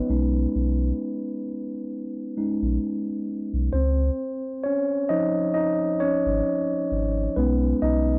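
Nostalgic and mellow, this brief lo-fi hip hop fragment, cut from a longer piece, moves at an unhurried 66 BPM in 4/4 with a gentle 16th-note swing and a tuning of A4 = 444 Hz. A tine electric piano carries the passage as a solo from 0.0 seconds, its soft, clean tone sitting up front with a direct presence, colored by cassette tape character and a low-pass filter that rounds off its top. A deep sub bass joins at 0.1 seconds, a round, sine-like tone with a fast attack and long sustain, placed close alongside the keys. The harmony drifts from Cb69 to Dbmaj9 at 3.7 seconds and back to Cb69 at 7.4 seconds, giving the passage a dreamy, suspended quality. A modest small-room ambience wraps the pair in an intimate space.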